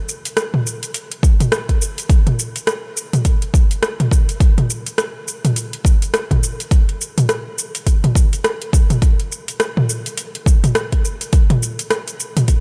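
Downtempo at 104 BPM in 4/4, this excerpt carries a hypnotic, meditative mood over a 16th-note swing of 60%. A deep house drum kit opens at 0.1 seconds with hi-hat, rim click, shaker and toms, its metallic hats sitting up front with overdrive and studio reverb. An electronic kick drum joins at 1.2 seconds, deep and overdriven, also placed up front and treated with studio reverb. Both parts are electronic, layered and produced, and they carry on together through a single section until 12.6 seconds. The overall sound is dry, with little reverb on the whole mix, so the gritty kit stays close and present.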